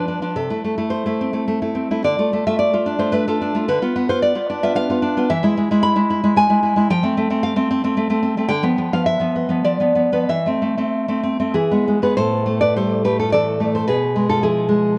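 A light reverb surrounds this short passage from a longer romantic work for solo nylon-string guitar, its full-bodied, fingerpicked tone placed up front and tinged with tape echo. In 3/4 with a rubato feel, the guitar spans a deep bass to a high treble as it moves through a passionate, wistful progression from Am/C through Dm, F and repeated dominant E chords. At 12.2 seconds the music shifts to a new passage, settling on an A5 before closing on E/B.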